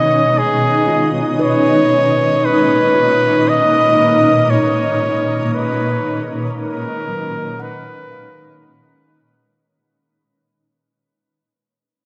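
A clear, classical-style solo flugelhorn sings a melody with tape echo up front, opening this peaceful, weightless ambient excerpt over a shimmering, ethereal, detuned pad of sustained chords with chorus, while a very quiet, mellow handpan rings out meditative arpeggios, the whole passage set in a huge, wet reverb space and fading out from 4.2 seconds.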